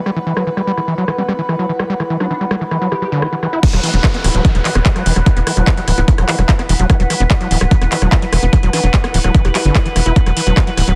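Alien and driving, this psychedelic trance excerpt runs at 147 BPM in a straight 4/4, opening on a filter sweep over a resonant sawtooth drone with moving overtones, held as sustained chords and pumping under sidechain with chorus and built-in reverb. Alongside it sits a dark, warbling tape-like pad, detuned and wave-folded, with a nostalgic lo-fi character in the background, while a squelchy, gritty acid bass riff with distortion and dub echo and a techno kit with metallic hats, handclaps, rim clicks and crash carry the first section. A very quiet nasal wobble bass with a formant filter threads in as a second line from 1.2 seconds. The drop lands at 3.6 seconds, where a punchy, up-front electronic kick and a tight sawtooth sequencer bass with a fast-attack filter pluck join the low end, marked by a very quiet downlifter. The master is dense and heavily limited, with light reverb and a small-room character on the drums.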